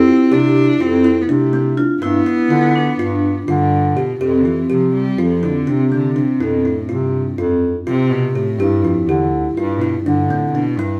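An intimate, up-front cello carries the melody with light vibrato, a soft attack and an airy sul tasto bow, while a vintage-sounding bass clarinet holds the bass line in a classical style. A woody kalimba plucks short thumb-picked arpeggios with a boxy character, and a metallic vibraphone with medium mallets, motor off, rings a second line in the background. This playful, shimmering chamber excerpt in an uneven 9/8 is heard from further back in a moderate studio room, moving from Fmaj7 and G to Fsus2 at 4.2 s and G6 at 8.6 s.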